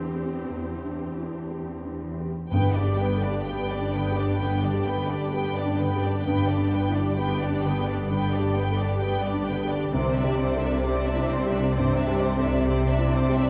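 A close, expressive studio violin section carries the melody from 2.5 seconds, its bowed line colored by vibrato and portamento, in this hopeful, tender passage cut from a longer cinematic film score with a free, rubato feel. Entering at the same moment, a lush symphonic violin section shapes a soft-attacked second line in the background, and a symphonic double bass section adds a bowed low foundation. From the opening, a dark, mellow grand piano with short sustain accompanies in the background, alongside a ringing, fingerpicked concert harp playing arpeggios and a viola section sliding with portamento, while a smooth, even studio cello section holds the bass. A very quiet timpani struck with hard mallets sounds briefly until 3.9 seconds, and the harmony moves from Cadd9/E to G, then settles on Cadd9 at 9.9 seconds. The orchestra is heard from further back in a wet scoring-stage space.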